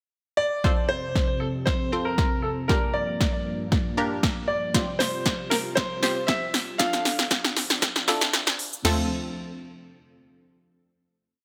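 A clear, polished baby grand piano carries a motif-based melody in this short, carefree dance-pop piece in F major at 117 BPM, entering at 0.4 seconds with subtle chorus and delay. Beneath it, a punchy, wave-folded sawtooth chord stab pushes the rhythm in close voicing, while a dark, full-bodied string machine with cellos sustains soft-attack pad chords with ensemble chorus, both pumping with sidechain. An up-front deep house kit drives a four-on-the-floor beat with layered electronic kick and snare, smooth hats, shaker, crash and toms through a build with a drum fill and filter sweep over F, Gm7, Csus4 and Dmadd9, before everything settles on a final F chord at 8.8 seconds in a bright 1980s-style digital sound with moderate plate reverb.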